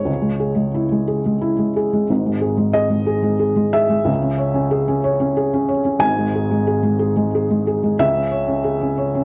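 This neoclassical minimalist piano piece is a short section cut from a longer work, with a hopeful, intimate mood. It moves at 91 BPM in 3/4 time, played with a loose, rubato feel. A single felt-muted upright piano plays solo throughout, sitting up front with a soft, dark, mellow tone shaped by thick felt, with its mechanical action clearly audible. The playing spans from Ab1 up to Ab5, and the harmony settles on D-flat minor at 0.1, 4.1 and 8.0 seconds, with stretches between that rest outside any chord. The piano carries the character of cassette tape, and the home recording is set in a moderate studio reverb that lends a gentle sense of space.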